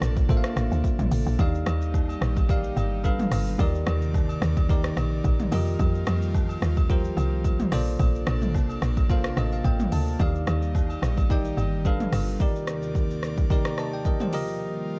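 Deep and hypnotic, this amapiano excerpt moves at 109 BPM in C dorian with a gentle swing, built on a tight, punchy log drum bass that sits up front beside a deep house drum kit with a punchy kick, dark hats, rim click, shaker and toms. A bell-like tine electric piano plays over chords moving from Bbmaj9 through Ebmaj7, G7 and Cm9/Eb to F9sus4, adding a fill at 9.1 seconds, while an airy, breathy pad with chorus and sidechain pumping sustains beneath it. Distant agogo bells and woodblock enter at 1.4 seconds, and the bass drops out at 12.4 seconds, all within a dark, digital ambience.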